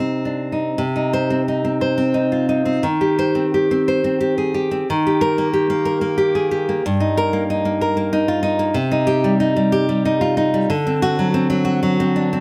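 In a rubato three-four lilt, a solo nylon-string guitar, fingerpicked and up front with fresh, warm strings under close, detailed microphones and light reverb, carries this intimate, passionate romantic classical excerpt from a minor-key opening through a move to the relative major and back, ending on a D7 chord at 10.7 seconds as the fragment breaks off from a longer piece.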